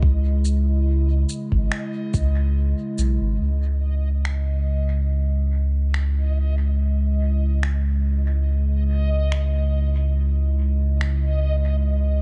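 Ambient dub with a spacious, hazy mood and a gently swung 16th-note feel, cut from a longer piece and resting on a C#madd9 chord, with a deep, round sub bass carrying tube saturation up front beneath a warbling, nostalgic pad treated with chorus and reverb. A soft electronic kick drum plays only until 2.3 seconds, while an electronic shaker and finger snaps with studio reverb and dub echo run from 0.4 to 11.2 seconds. High above, a reversed, dreamy granular texture hovers on a single bright note, all within a dark digital ambience.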